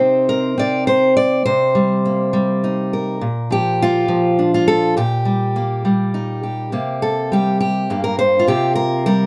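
A lone fingerpicked steel-string acoustic guitar opens this haunting, reflective folk fragment, its warm auditorium tone sitting up front and heard in close detail in a dry room. In a straight six-eight, the guitar moves from Cm7 through Bb and Eb/Bb before the opening phrase returns at 6.7 s over a C7(no3) chord, spanning G2 to D5 until the clip ends at 9.3 s.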